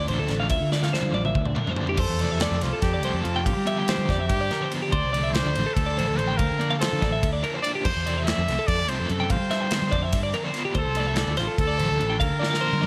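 In a restless, straight-feel 7/8, this intricate math rock and midwest emo fragment opens with a very quiet, dark, fingered electric guitar that drops out at 2.0 s. A bright, twangy twelve-string electric guitar spins compressed arpeggios through slapback echo and analog delay, while a punchy, amped fingered bass anchors the low end. Behind them, a double-tracked, overdriven semi-hollow guitar churns out a murky riff with tremolo and slapback. Up front, a studio drum kit with a punchy kick and rolled-off top fires off a fill from 0.7 s. At 2.0 s, a smooth, pop-style solo trumpet takes the melody with vibrato, scooped notes and slapback, moving through cycling Dm7, Bbmaj7, Fmaj7 and G7sus4 chords in a big, reverberant arena-like space.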